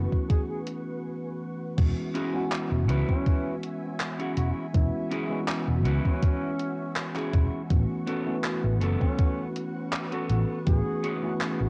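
This woozy, nostalgic vaporwave fragment opens at once with a worn, slightly out-of-tune tine electric piano. The piano is lightly overdriven and lushly chorused, with sampler grit and cassette tape coloring. Beneath it sit a round, amped fretless bass and a silky string machine that lingers in the background with slow-attack, long-release chords. A thumpy electronic kick sits up front, and a gated 80s drum machine adds crash, handclaps and hi-hat, both re-recorded in a large room. Over this, a breathy, whispered flugelhorn plays a distant jazz-style solo with scooped notes, light vibrato and tape echo, and a brief break at 1.0 s leads into the main passage drifting between A69 and E69 chords. At 2.1 s a dark, clean, fingered electric guitar enters with a riff through subtle chorus and analog delay, and the whole home-cassette recording carries light reverb.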